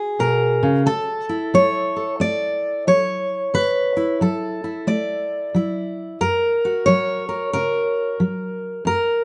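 A bright, full-bodied fingerpicked steel-string dreadnought sits up front in this nostalgic, peaceful folk fragment cut from a longer piece, its fresh strings and audible finger squeaks carrying a gently swung figure that moves from F#add9 to Dadd9 before settling on F# at 6.2 seconds, all framed by a moderate studio reverb with a live-room feel.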